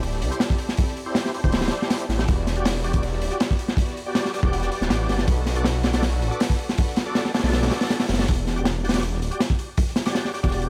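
Gritty, saturated and set in a small room, this raw, nostalgic drum and bass cut from a longer jungle piece rides on an up-front crunchy breakbeat kit with a punchy kick and rolled-off top, shadowed by a second, very quiet breakbeat layer of hi-hat, shaker and high-tuned snare. A thick, menacing detuned saw bass with tube saturation sits forward in the mix, while a full tonewheel organ fires stabs through chorus vibrato, slow rotary speaker, dub echo and 12-bit sampler grit. A lush, bowed studio string section holds sustained chords in the background over the D9sus4, Em9 and Bm7 changes until it drops out at 8.3 seconds.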